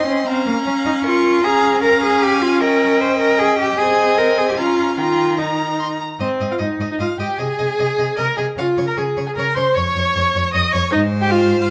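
Quick classical-period string quartet music in Ab major, cheerful and spirited, moving at 153 BPM in a straight 3/4 and cut from a longer movement. A focused, distant first violin sings the melody with vibrato, a second violin adds a smooth, even line, and an intense viola and a rich cello sit up front with accompaniment and bass, sounding louder than the violins. Moderate recital hall reverb surrounds harmony that opens on Bb minor and Eb7, then turns at 6.2 seconds toward Db and Ab chords, closing on Ab.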